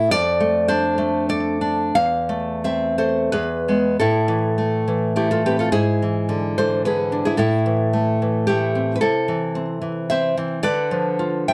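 A supple triple metre in 3/4 moves with a rubato feel, its pulse drifting between 86 and 114 BPM in this short passage cut from a longer romantic piece for solo classical guitar. Set in A minor and tuned to A4 = 442 Hz, the music feels wistful and passionate, opening on a Dm/F chord and moving through Am/E to E before a new section begins at 4.0 seconds. From there the harmony passes from Am through E7/G# and back to Am, then on to Am/C and a closing Bdim/D at 10.6 seconds. The nylon-string guitar plays alone from start to finish, fingerpicked and spanning E2 to G5, with a bright acoustic tone placed up front. Finger squeaks on the strings add intimacy, while a slapback echo on the guitar and light reverb around it lend a subtle sense of space.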